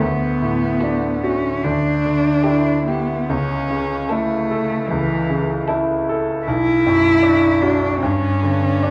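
A rubato pulse in 4/4 drifts between 72 and 78 BPM in this tender fragment of a slow, romantic piano trio movement in D major, tuned to A4 = 439 Hz, moving from D through Em7/D, A/C# and Bm to a rootless Em7/G. A brilliant, long-sustaining grand piano with a vintage sheen carries the accompaniment up front, while a rich, focused cello sings a close second line with vibrato. From 0.8 s a very quiet, woody violin takes the melody with soft, bowed vibrato, all set in a wet recital hall and colored by the warbly pitch drift of worn cassette tape.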